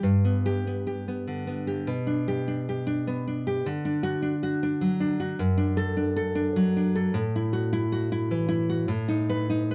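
A fingerpicked nylon-string guitar sits up front with a full-bodied, classical tone, carrying this short romantic excerpt of a solo piece alone from 0.0 to 9.7 seconds. In G major and 3/4 at 102 BPM with a rubato feel, it moves from G through G/B, D and D/F# to F#m7/A and B7/A, with a passionate, wistful mood. Captured live in one room with moderate studio reverb, the guitar spans F#2 to B4 and is tuned to A4 = 445 Hz.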